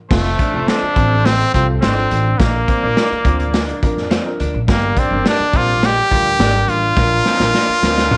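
Opening at once with a brilliant, up-front trumpet melody over a very quiet vintage horn section, a smooth grand piano, a dark lo-fi guitar riff, a woody pizzicato upright bass and a gritty, punchy garage drum kit in a pumping small room, this danceable, uplifting 1960s-style soul excerpt in F major moves at 105 BPM, with a compressed, slightly broken-up second guitar adding stabs from 0.7 s, a piano fill at 3.5 s and a drum fill at 7.0 s, set in light studio reverb.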